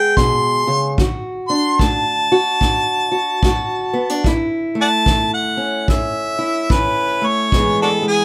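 Swaggering and gritty, this acoustic country blues excerpt at 73 BPM in A major swings as a light-vibrato harmonica, roomy with tongue slaps and scooped notes in a jazz style, solos up front over a boxy, fingerpicked parlour steel-string guitar and a punchy, distant kick drum played with brushes, all in light reverb, moving from E to D, A and E.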